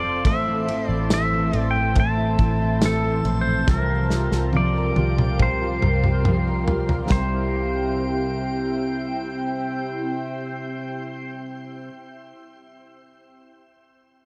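A bright, twangy pedal steel guitar carries the melody with fingerpicks, slide and volume swells, its clean, compressed tone trailed by digital delay in this blissful, floating dream pop fragment cut from a longer piece. Beneath it, a fingerpicked twelve-string acoustic guitar rolls out full-bodied, octave-doubled arpeggios with audible finger squeak, shimmering through analog chorus and delay. A very quiet, clean electric guitar adds dark accompaniment, while a foam-muted vintage electric bass sits round and amped at the bottom. An ethereal, granular pad holds slow-blooming sustained chords with chorus and phaser, and a faint, glassy harmonics texture drifts high above. A loose indie drum kit in a small room sits up front with a tight kick, dark cymbals and tambourine, playing a fill from 3.7 to 7.1 seconds before dropping out at 7.3 seconds as the harmony settles from Am through C7sus4 onto C, all within a dark, gently reverberant production.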